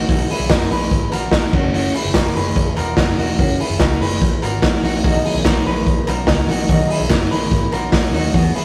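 Jangly indie pop with a bright, nostalgic mood, this short excerpt is built on electric guitar arpeggios through a small old amp, slightly broken-up, over a dark, foam-muted picked bass sitting in the background and a raw garage drum kit placed up front, its punchy kick and gritty, saturated sound carrying crash, hi-hat and snare. Very quiet, crisp group handclaps join at 0.5 seconds, and a full-bodied jumbo steel-string acoustic guitar enters at 5.0 seconds as background accompaniment, finger squeak audible, as the harmony moves from Bmaj7 to F#7 and back. The whole take has the rough character of a rehearsal-room recording, with tube saturation and moderate reverb.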